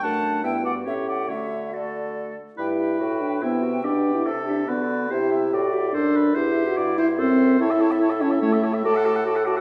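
In a straight-feeling triple metre, this graceful, lively fragment of a quick classical-period wind quintet movement sets a pure, bright silver concert flute melody with vibrato and tongued notes over a clear, distant oboe second line, a dark, close-miked French horn sitting up front in the accompaniment, a clarinet with a smooth top, and a warm bassoon bass touched with light vibrato, heard in a wet recital hall.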